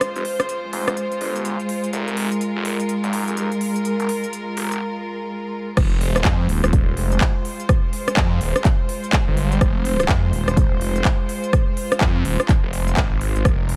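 Set in a digital ambience with a faint mains hum, this gritty, aggressive bass house excerpt builds as clear, biting bowed strings hold sustained chords under sidechain pumping, a big-room dance drum kit supplies crisp hats, handclaps, rim clicks and crash cymbal, and a thick, swirling phased detuned saw bass sits up front, before a brief break gives way at 5.8 seconds to the drop, where a punchy, tape-warm electronic kick drum enters.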